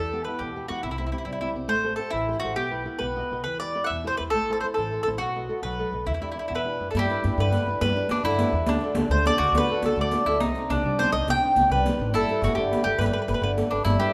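A round, up-front picked mandolin leads this romantic, wistful Italian folk serenade in a rubato 6/8 over fingerpicked flamenco guitar with fresh strings and audible finger squeak and a steel-strung pizzicato upright bass, before a riq with dark jingles and hard hands joins at 6.9 s and a woody second mandolin line enters at 7.0 s as the music turns to a major key, the ensemble sitting in a moderate scoring-stage reverb in this fragment of a longer piece.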